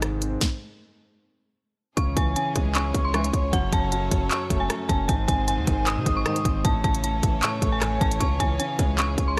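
Up-front trap drums with a hard-clipped kick, sharp snare and crisp hats drive this hard-hitting, melancholic half-time trap excerpt at 154 BPM in C# harmonic minor, joined by a punchy, heavy 808-style bass and a dark, boxy concert grand piano, with an eerie, warbling FM synth bell melody carrying chorus and digital delay and a lush, bowed string section arriving at 2.0 seconds after a stop from 0.4 seconds, while a distant, roomy brass ensemble adds brief stabs over a studio ambience marked by lossy compression artefacts.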